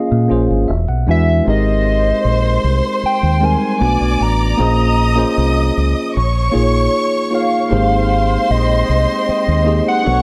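Lightly reverberant and smooth, this cinematic soul fragment at 77 BPM sets a hollow, woody square lead with chorus carrying the melody over a worn, slightly out-of-tune tine electric piano that plays a fill from 0.3 to 1.5 seconds, a round, punchy dub bass up front, a lush bowed string section entering at 1.5 seconds as a second line, and a very quiet, flute-like tonewheel organ with fast rotary sustaining chords from 7.7 seconds, moving through Bbm7, Abmaj7 and Eb7sus4/Bb.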